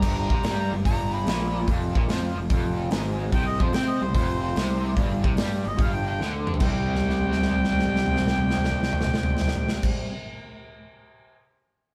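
Heard live in a stone room with moderate reverb, this gritty, raunchy excerpt of blues rock and southern rock power-trio playing swings in 4/4 at 146 BPM, with a mellow, vintage harmonica carrying an overdriven melody full of light vibrato and scooped notes, a bright, double-tracked cranked stack guitar driving an overdriven riff with harmonic tremolo, a round, fuzzed picked electric bass underneath, and a big acoustic rock kit with a dark, smooth tone and a punchy kick adding fills at 6.2 and 6.8 seconds and playing on alone until 11.4 seconds, as the chords move from G through Fmadd11 and Cmadd11 to F5, G5 and C5.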